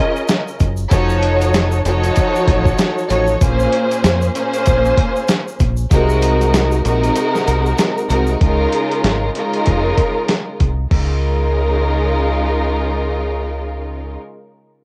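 Nostalgic and soulful, this boom-bap hip-hop excerpt moves at 96 BPM in 4/4 with a swung sixteenth-note feel, settled in D-flat major and cut from a longer piece. A lush, bowed string section opens at 0.0 seconds and carries the harmony through Db69, F7b9b13, Bbm7 and Ab7, its vibrato-rich ensemble sound both up front and distant, shaded by cassette tape, filtering and plate reverb. A dusty sampler-style drum kit arrives at 0.3 seconds, its thumpy kick, medium-tuned snare, hi-hat and crash roughened by overdrive, 12-bit grit and tape, as if re-recorded in a small room. Beneath it a dark, round fingered electric bass holds the low end from F1 to F2 with a punchy, direct-and-amped tone, while a grainy, bright tube shaker sits faintly in the background until 8.4 seconds. After a break at 7.2 seconds, the drums drop out at 11.1 seconds, leaving strings and bass to close out the homespun cassette recording with its light reverb.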